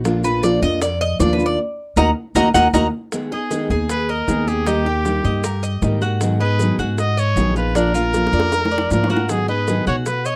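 A straight, danceable 4/4 groove in Cuban son and guajira style drives this sultry fragment, with tight, high-tuned bongos in the background, grainy maracas close by, and a woody, thumpy pizzicato upright bass up front beside a full-bodied, fingerpicked nylon-string guitar. A metallic, double-stringed Cuban tres with picked arpeggios is featured through the opening, with a band accent from 1.6 s. At 3.3 s a bright trumpet enters up front with a smooth-topped, vibrato-laden pop-style melody, all set in a dry, close 1970s-style studio sound with light reverb.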